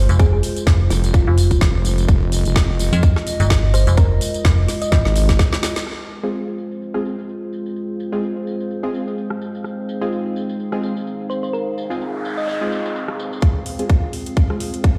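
A stone room's reverb surrounds this gritty, aggressive bass house clip, heard as if through a big sound system in a bare space, at 127 BPM in F minor with a 16th-note swing. It opens on a drop where a tight, up-front electronic kick and a metallic FM bass with tube saturation hit alongside a wobbling, heavy sawtooth-and-sine wobble bass that enters at 0.9 seconds. A garage kit of woody snare, metallic low-passed hats, rim click and tambourine runs nearly the whole way, while a deep, moody analog pad holds sidechain-pumped chords and a round, tine-like FM pluck carries the melody through chorus and delay. After a drum fill and a band accent, the kick and basses drop out and a nasal, band-passed chord stab arrives at 6.2 seconds under a filter sweep, joined by a warbling, nostalgic lo-fi pad with its own reverb. The pluck returns briefly, an electronic noise sweep runs from 11.8 seconds, and the kick comes back at 13.4 seconds for a closing build-up before the excerpt is cut off.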